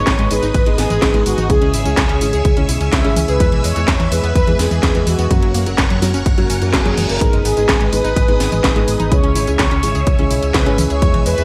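Italo disco at 126 BPM in a straight 4/4, this brief excerpt from a longer piece feels nostalgic and melodramatic as it moves through G#m, C#m, E and F# before circling back to G#m. A mellow synth brass carries the melody with a brassy, detuned sawtooth tone and soft attack, colored by chorus and delay, while a phased string machine holds swirling, vintage chords high above, its ensemble chorus and phaser roughened by 12-bit sampler grit. A dark concert grand piano adds boxy, intimate stabs with audible action noise, and a hollow-body short-scale fingered electric bass gives a round, amped low end through tube saturation. A punchy, overdriven electronic kick anchors a house drum kit of handclaps, hi-hat, cracking snare, tambourine and toms, the kit treated with gated reverb and both re-recorded in a large room. Behind them an analog pluck ripples arpeggios with a ring-modulated, detuned edge, and a reverse cymbal rises in the background from 6.5 to 7.2 seconds, all set in a light reverb.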